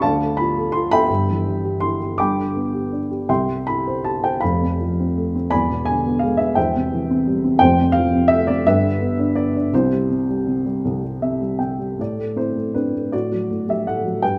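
A dark, woody upright piano plays alone and up front, its action noise audible and its short sustain set in moderate scoring-stage reverb, in this tender, lyrical classical fragment in C major and 6/8 that moves with rubato at about 52-58 BPM through a progression from Dm to C, adds a brief fill at 10.8 seconds, and turns to Am at 12.0 seconds.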